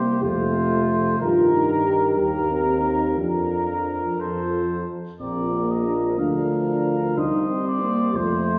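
Bathed in the lush reverb of a church or concert hall, this warm, triumphant classical brass quintet passage moves at 61 BPM in 6/8 in Bb major, with a vintage-toned trumpet carrying the melody over a distant flugelhorn second line touched with light vibrato, a dark, smooth-topped French horn and a mellow trombone with vibrato sitting in the background as accompaniment, and a clear, soft-attacked tuba up front on the bass.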